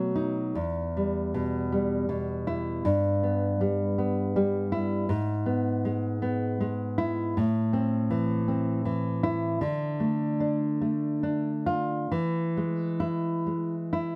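A lone nylon-string guitar opens on a B7 chord before settling onto E minor at 0.6 seconds, setting a melancholic, wistful tone for this romantic classical guitar piece. The playing is rubato in 3/4, drifting between 65 and 83 BPM, and the instrument is tuned slightly high with A4 at 445 Hz. Its sound is dark and deep, carried by fresh strings and thumb-plucked notes, reaching from E2 up to F4. The harmony moves through Em/G, E/G#, Am at 7.4 seconds and Dm before resting on E, giving the short passage a searching, unresolved quality. Close, detailed microphones keep the guitar up front, while a light reverb adds a touch of space around it in this fragment cut from a longer piece.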